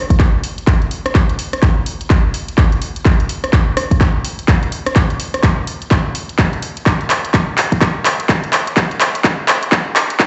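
Heard through a big sound system in a bare stone room, with a high-pass filter and the highs cut off above 8.0 kHz, this aggressive, swaggering bass house excerpt at 126 BPM in 4/4, swung at 61% on the sixteenths, is one long build-up with a drum fill and a filter sweep throughout, driven by an up-front, punchy, overdriven layered electronic kick and an overdriven house kit of handclaps, hi-hat and rim click that both play from 0.1 to 10.3 seconds.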